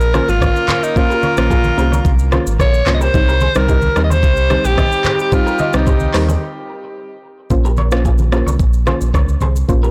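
A straight 4/4 afrobeats groove at 110 BPM rides on an electronic, produced drum kit with a knocking kick, metallic hats, handclaps, rim click and shaker, re-recorded in a large room and given soft clipping on the snare, while low-tuned, thick-skinned congas sit close but in the background. A deep, sine-like sub bass with octave sits up front from start to finish, under a sultry, smooth mood in Bb dorian that moves from Bbmadd9 to Cm and back. A bright alto saxophone with vibrato carries the melody up front through tape echo, shadowed by a tight, mellow horn section in octave doubling, also echoed, until the sax drops out at 6.5 s and the horns at 7.2 s. A soft, round, dark pluck with chorus fills out the harmony, and a clean, twangy, scooped electric guitar picks a compressed riff with subtle chorus and tape echo. After a break from 6.4 to 7.5 s, a new section begins, and the whole short cut from a longer piece sounds dry, blown-out and overdriven.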